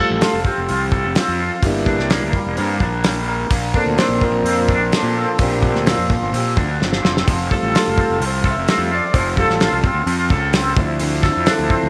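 A mellow transistor combo organ takes the solo over its own spring-reverbed sustained chords throughout this dark, trippy psychedelic rock excerpt at 128 BPM, joined by a bright, twangy double-tracked guitar riff with harmonic tremolo, a round fuzz-overdriven fingered bass, and a cloth-damped, thuddy drum kit with a fat snare and tight kick that plays a fill at 6.8 seconds, all moving through Fadd9, Gm, Bbadd9 and Dm7 inside a moderate echo-chamber reverb.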